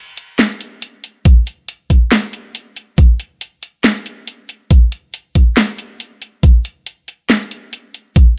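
Brooding and heavy, this dubstep excerpt moves at 139 BPM in a half-time 4/4 feel with a 56% swing on the sixteenths. A layered garage drum kit sits up front from 0.2 seconds, its cracking snare and warm hi-hats carrying the faint air of a small room. At 1.3 seconds an overdriven, knocking electronic kick drum joins, louder than the kit, and the whole dry, gritty recording carries little reverb.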